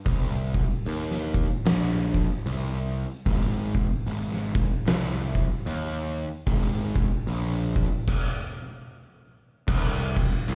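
A growly, overdriven fuzz bass holds down the low end of this hypnotic, sludgy stoner and doom metal excerpt, its picked notes sitting up front in a direct, amped tone between Ab1 and Eb2. An oversized, low-tuned acoustic drum kit plays alongside it throughout, saturated and gritty, with a boomy kick, a fat snare, hi-hat, and crash and ride cymbals that sound dark and smooth within a bright stone room. The tempo crawls at 75 BPM in 4/4 with a swung eighth-note feel, giving the groove a heavy, lurching gait. The music breaks off in a stop from 8.1 to 9.7 seconds, and both parts play on until 10.6 seconds. It comes across as a live gig heard through the venue's PA, coloured by club reverb, and it is cut from a longer piece.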